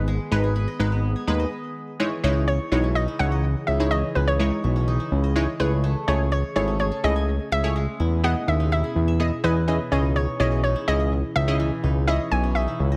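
Energetic and driving, this pop excerpt rides a fat, thick analog bass up front, with punchy, bright chord stabs with chorus and a very quiet ethereal, airy pad holding sustained chords underneath. An acoustic qanun, played with fingerpicks, spins bright-edged arpeggios through digital delay, and after a brief stop at 1.5 seconds a hollow, bouncy square-wave pluck enters at 2.5 seconds carrying the melody with chorus and delay. The chords open on G#m, then move from C#madd9 through Amaj7 and Emaj7 before returning to C#madd9, all set in a light reverb.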